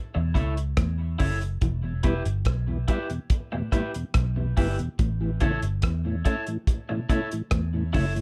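A straight 4/4 roots reggae groove at 71 BPM in E dorian sets a serious, hypnotic mood in this cut from a longer piece. The cloth-damped drum kit sits up front with a thuddy, tight kick, hi-hat and rim click, its top end rolled off to sound like a small room, while the vintage muted fingered bass is dark, round and punchy from the low E upward. An electric guitar through a small old amp plays bright, twangy, slightly broken-up accompaniment with a lo-fi, compressed bite and tape echo. Beneath it, a clean electric guitar picks low arpeggios with tremolo, tucked into the background. At 1.8 seconds a mellow tonewheel organ joins with chorus vibrato, a slow rotary speaker and tape echo, as the harmony moves from A to Em and back to A at 5.0 seconds. Light reverb and a dark, warm production hold the parts together.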